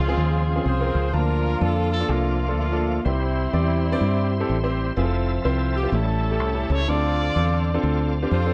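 Uptempo gospel with a swung 4/4 feel, this short excerpt cut from a longer piece sounds jubilant and hopeful. A tight, jazz-style horn section carries the melody with vibrato and a present, warm tone, while a fingered electric bass sits up front, round and punchy with a foam-muted, amped directness. A bright tonewheel organ holds sustained chords, its shouting, lightly overdriven voice colored by key click, chorus vibrato and a slow rotary speaker. A clear grand piano joins at 0.1 seconds as accompaniment, intimate and natural with audible action noise. The harmony moves from Dbmaj7 through Bbmaj7/D, C and Fmaj7 to A7 and Dm7, all inside a dark production with light reverb.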